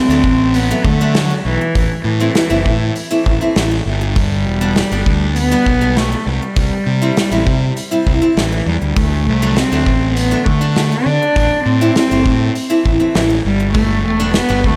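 A straight 4/4 groove at 100 BPM from a loose indie drum kit with a punchy kick and rolled-off top drives this brooding, dark quiet-loud alternative rock excerpt in A dorian, where a smooth, floating bowed cello sings the melody up front with slapback echo over bright picked steel-string acoustic guitar arpeggios, also touched with slapback, and a fuzzy, overdriven fingered electric bass, all set in light studio reverb over a D, Am, G and C progression.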